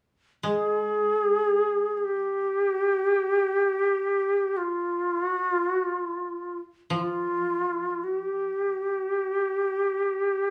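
In a light studio reverb, this austere, calm fragment of Japanese traditional chamber music unfolds in free time, with a breathy, bamboo-toned shakuhachi carrying the melody with soft attacks and vibrato over a dry, woody koto accompaniment played with fingerpicks and set lower in the mix.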